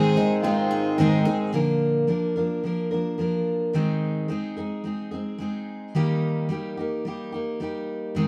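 Moderate studio reverb gives this short acoustic folk passage a natural sense of space, cut from a longer piece and moving at 109 BPM in a straight 4/4 with a hopeful, nostalgic mood in B-flat mixolydian. At the start, a very quiet picked steel-string guitar carries a brief melody with a touch of finger squeak, while a rich, focused fiddle with light vibrato and a smooth top plays a bowed second line. Beneath them a reedy, breathing pedal harmonium holds mellow sustained chords in a boxy small-room sound, and a woody twelve-string guitar on old strings adds shimmering, octave-doubled arpeggios. Those voices fall away by about 1.6 seconds, leaving an up-front, bright, full-bodied steel-string guitar with fresh strings to carry the accompaniment alone until 8.3 seconds. The harmony moves from A-flat to B-flat, back to A-flat and on to E-flat.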